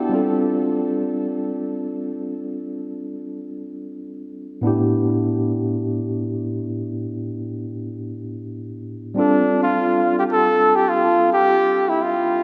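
A dreamy mix soaked in long plate reverb gives this smooth, relaxed chillout excerpt a floating quality. Up front, a bright, clean tine electric piano heard through its built-in speakers and colored by analog delay plays suspended chords, moving from G9sus4 to A9sus4 and back to G9sus4 at 9.2 seconds. At that same moment a warm flugelhorn enters with a pop-style solo melody, shaded with vibrato and trailed by delay.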